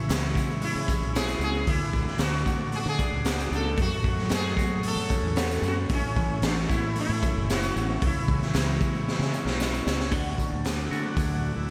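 This trippy, kaleidoscopic psychedelic rock excerpt in D lydian opens with a buzzing, shimmering sitar melody trailed by tape echo, a dark, clean electric guitar riff coloured by phaser, and a vintage combo organ holding buzzy chords in the background through spring reverb. A growly, overdriven fingered bass and a raw garage drum kit join almost at once. The kit sits up front with a high-tuned snare, a punchy kick and a lo-fi, muffled, rolled-off top, while a jingly tambourine stays close and dry behind it. At a straight 114 BPM in 4/4, the harmony moves through C#m, D, F#m and A before coming back to C#m. A drum fill arrives at 9.1 seconds, the sitar stops at 9.6 seconds, and at 10.1 seconds the transistor combo organ steps forward for a brief solo over a D chord, all set in light reverb.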